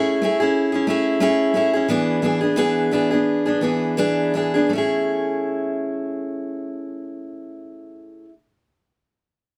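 A picked steel-string acoustic guitar sits up front with a warm, concert-ready tone, carrying this sunny, carefree pop fragment in A major from 0.0 to 8.3 seconds. At roughly 80-93 BPM in 4/4 with a light sixteenth-note swing, it moves from Amaj7 to E7 and back to Amaj7 at 4.7 seconds, easing the tempo through the opening 4.7 seconds. A moderate studio ambience gives the short passage, cut from a longer piece, a gentle sense of room.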